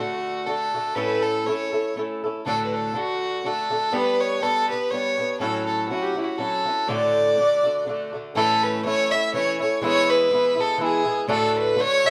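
Celtic folk in a cheerful, lively waltz, this excerpt moves at 122 BPM in 3/4 with a light swing on the eighth notes. A single bowed fiddle carries the melody from start to finish, its dark, woody tone shaded with light vibrato and gliding portamento. Beneath it, a fingerpicked acoustic guitar plays swing-style accompaniment across a deep range, sounding boxy and warm with fresh strings. The tune begins in D major, then shifts into A major at 8.4 s for a new section that lifts the harmony toward E before settling back on D. Both players sit up front in a shared room with moderate studio reverb, giving the performance the feel of a band playing live together, cut from a longer piece.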